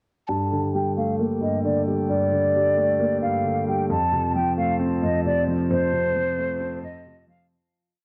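Menacing and melancholic, this short half-time trap breakdown loops a breathy, hollow flute melody with vibrato over a dark, intimate grand piano playing a rising arpeggio in eighths, its action noise audible, while a glassy, ethereal glass harmonica pad sits in the background across Gmadd9 and F. All three parts are low-pass filtered and set in a moderate concert hall reverb, with worn cassette tape giving the sound a warbly pitch drift. A filter sweep runs throughout, and the piece fades out from 5.7 to 7.5 seconds.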